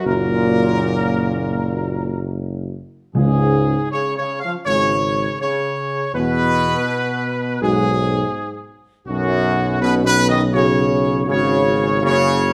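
Set in a straight, steady 4/4, this solemn and triumphant classical fanfare moves at a stately, ceremonial pace and is cut from a longer piece. Up front, a warm trumpet section carries the melody with light vibrato and a soft attack. A clear trombone section and a French horn section, the horns set further back, hold sustained chords beneath it, while a solo tuba supplies the bass; horns and tuba share a mellow character and the same light vibrato. From 3.1 to 4.2 seconds, timpani played with soft mallets on calf heads add a brief, round accent in the background. The harmony moves through Gb, Db, Eadd9 and Cbsus2, and the whole brass ensemble sits in a wet stone room whose reverb lingers for about 1.1 seconds.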